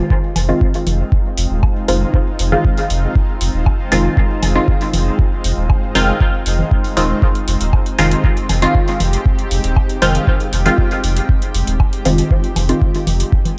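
This dub techno fragment, cut from a longer piece, opens on a blurred, cloudy granular pad holding a sustained Fm7 chord with slow attack, built-in reverb, a grainy 12-bit sampler grit and sidechain pumping. An overdriven, up-front analog kick arrives at 0.1 s at a straight 118 BPM in 4/4, and by 0.4 s a round, soft triangle-and-square sub bass sits deep beneath it, pumping with the sidechain. Metallic, overdriven hi-hats re-recorded in a small room join then too, along with congas and woodblock tucked into the background, their percussion pumping and trailing dub echo. From 0.5 s a muted, detuned sawtooth chord stab sits up front, its filter sweep, chorus and phaser giving it an evolving, decaying character as dub echo repeats it. The mood is cavernous and deep, staying on the single F minor chord throughout, with a light reverb over the mix.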